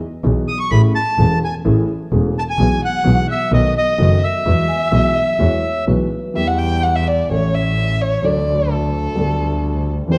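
Passionate and elegant, this rubato tango fragment sets a reedy, bright bandoneon melody up front over a dark, mellow concert grand piano with audible action noise and a clear, focused bowed double bass with vibrato. A violin with portamento weaves an expressive second line, a metallic vibraphone played with soft mallets rings in the background from 4.7 s, and after the bandoneon stops at 5.8 s the violin takes a solo from 6.4 s. The recording sits in a moderate recital hall reverb with a warm production.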